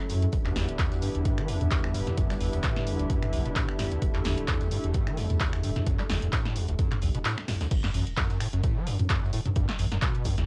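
Acid house with a driving, trippy feel and a light swing, cut from a longer piece and carrying the character of a home cassette recording in a lightly reverberant space. A squelchy, resonant overdriven acid bass riff with distortion and ensemble chorus pumps alongside a deep triangle sub bass, a punchy electronic kick, and an analog drum machine of punchy snare, handclaps, finger snaps, hi-hats, toms and crash, all over a very quiet soft-mallet kit with a fat snare. A lush, airy, detuned unison pad holds sustained chords through a brief break at 7.3 seconds and falls away as the drop arrives at 7.7 seconds, shifting the harmony from Em7 to F#m.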